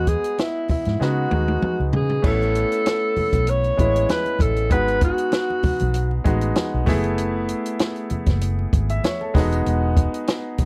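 Smooth and bittersweet, this short cut from a lush 1970s-style soul piece moves at 97 BPM with a light sixteenth-note swing, as a mellow alto saxophone with light vibrato sings the melody until 6.2 seconds over clear, intimate baby grand piano with audible action noise, a dark, round, foam-muted fingered electric bass, a compact cocktail kit with dark cymbals, a high-tuned snare and a punchy kick that plays a fill from 1.0 to 2.2 seconds, and very quiet, bright congas, all captured in a dry, close studio sound as the chords drift from Emaj9 through Amaj7, G#m7 and F#m11 back to Emaj9.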